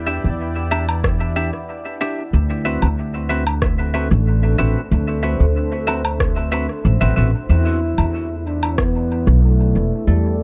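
A meditative, spacious ambient dub excerpt in E minor at 93 BPM opens at 0.0 seconds with a deep, moody pad of slow-attack sustained chords, thickened by chorus and reverb, over a woody, growly pizzicato upright bass that sits up front. Bright, clean stabs from a semi-hollow electric guitar and an electronic woodblock and rim click both trail dub echo, while a layered, tape-warm electronic kick adds a deep low end as the harmony moves from Em7 to D13 and back. At 7.5 seconds a veiled, bucket-muted trombone takes up the melody with soft attacks and its own dub echo, and a ringing concert harp arpeggio appears at 10.1 seconds, all within an echo-heavy digital ambience.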